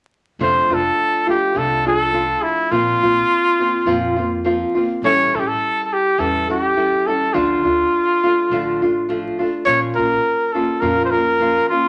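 A lightly swung 4/4 pulse at 104 BPM drives this proud, festive mariachi passage in F major, cut from a longer piece and tuned to A4 = 438 Hz. A clear trumpet carries the melody up front from 0.4 to 11.9 seconds, played solo in a pop style with vibrato and a smooth top between E4 and C#5. Beneath it, a small, fingerpicked nylon-string guitar sits close and warm in the accompaniment, while a pizzicato upright bass with gut strings adds a woody, dark, thumpy foundation lower in the mix until 11.6 seconds. The harmony moves from F6 through Bbsus2, A7 and Dm before landing on Bbm. A wet studio reverb and a layer of vinyl crackle with a dulled top end give the whole recording a vintage, roomy sheen.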